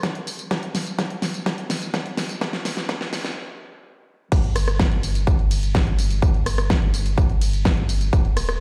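Played through a big sound system in a bare stone room with light reverb, this powerful, euphoric festival progressive house excerpt at 126 BPM opens on a build-up. A punchy, tape-warm electronic kick and an up-front big-room dance kit, with a huge snare, hi-hat, ride, crash, rim click and tambourine, play a drum fill under a filter sweep, break into a stop at 3.4 seconds, then hit the drop at 4.3 seconds as a deep, thick saturated sub bass enters between Eb1 and G1, pumping with the sidechain.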